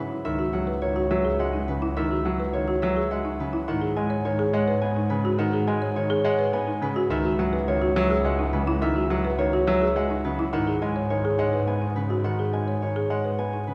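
Hypnotic and urgent, this minimalist classical pattern piece in C# minor moves at 105 BPM in 3/4. A ringing, fingerpicked Celtic harp carries the melody up front over a present baby grand piano accompaniment, woody, boxy folk marimba arpeggios and a rich, smooth bowed double bass with light vibrato, all set in a lingering cathedral reverb as the harmony alternates between C#m9 and G#m7 in a fragment cut from a longer work.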